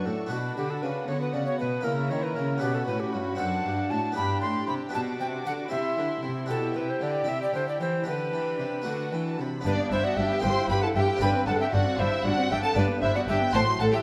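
A straight 6/8 pulse at 77 BPM, counted in dotted quarters, drives this lively, brilliant baroque-style concerto movement, cut from a longer piece, which settles into G major from 3.4 s. The airy, wooden alto recorder leads with a crisp, chiffing attack, while a focused violin section also carries melody and a second violin section plays a smooth inner line in the background. A brilliant Italian-style harpsichord, a lush viola section and a bowed cello bass fill out the texture, a double bass section joins at 9.7 s, and the whole ensemble sits in a moderate recital hall reverb.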